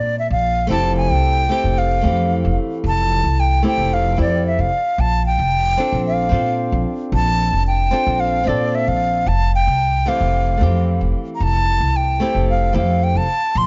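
Light reverb and a small-room ambience give this sunny, relaxed sunset chillout fragment a close, intimate sound with softened top end, at 112 BPM in a straight 4/4 in F major. A bright wooden flute carries the melody up front, its airy tone, vibrato and soft attack lifted in the highs and trailed by a digital delay. Beside it sits an acoustic upright bass played pizzicato on gut strings, dark, woody and thumpy, also placed forward in the mix. A fingerpicked flamenco guitar enters at 0.7 s with warm acoustic accompaniment, its notes also touched by digital delay. The harmony moves from a brief Bb into Fmaj9, shifts to Bbmaj9 at 4.7 s, and returns to Fmaj9 at 9.3 s, as this passage cut from a longer piece drifts by.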